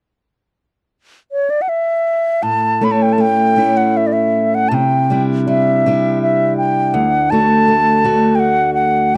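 Celtic slow air excerpt in a pastoral, wistful mood and unhurried rubato 3/4, where an airy, close-miked wooden flute carries the melody with vibrato and tongued notes from 1.3 seconds, joined at 2.4 seconds by a picked steel-string acoustic guitar accompaniment moving through A, Cadd9 and D, both parts up front in a dry, close 1970s-style studio sound with light reverb.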